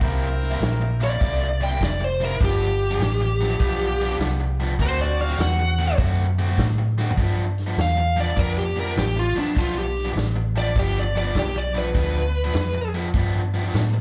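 This gritty, swaggering electric blues shuffle, cut from a longer piece, rolls at 100 BPM in 4/4 with swung eighth notes, sitting in G mixolydian over C7, G7 and D7 changes. Two overdriven guitars carry it: a warm, picked rhythm part holds down a riff throughout, while a smooth lead plays its solo up front from 1.0 seconds, both with slapback echo. A bright horn section with light vibrato punches jazz-style ensemble stabs, also treated with slapback echo and analog delay, until 5.8 seconds. Underneath, a vintage foam-muted fingered bass gives a round, dark, amped bottom, and a swinging big-band kit of hi-hat, snare, toms and boomy kick sounds natural in a big room, dropping a fill at 6.9 seconds. The whole band comes across as a live gig heard through the venue's PA, with a touch of club reverb.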